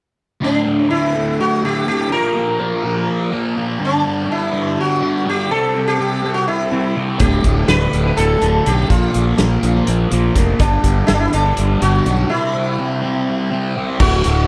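A hazy, kaleidoscopic psychedelic rock passage in 7/8, cut from a longer piece, opens at 0.4 s with a buzzing, shimmering sitar melody alongside a bright, double-tracked fuzz guitar riff that is distorted and phased, both carried on dub echo. At 7.2 s an overdriven, up-front fingered electric bass and a vintage acoustic drum kit with a punchy kick and rolled-off top join in, before a break at 12.3 s. The echo-heavy mix sits in a moderate echo chamber reverb.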